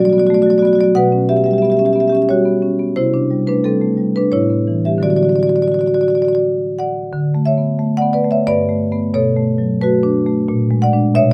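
A solo marimba played with medium mallets opens this hypnotic, flowing contemporary classical excerpt in D major, moving in a straight 3/4 at 89 BPM with a full, up-front tone caught by close, detailed microphones in light reverb, its lush extended chords giving way at 7.1 seconds to a second section that ends on a Bb7.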